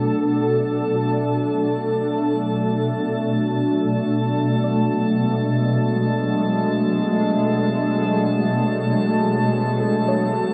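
Ambient music in free time, serene and spacious, cut from a longer piece. A shimmering, ethereal pad sits up front, holding sustained chords with an octave-up shimmer, a detuned unison, a bright, granular edge and chorus. Behind it, a glassy texture of drifting overtones fades in gradually over the whole 10.5 seconds, calm and quiet. From 1.0 seconds a very quiet, soft and round pluck adds gentle, dark arpeggios. The harmony rests on Bm7 before moving to D at 9.8 seconds. A huge, wet reverb and the worn, warbling pitch drift of old cassette tape give the recording a hazy, faded quality.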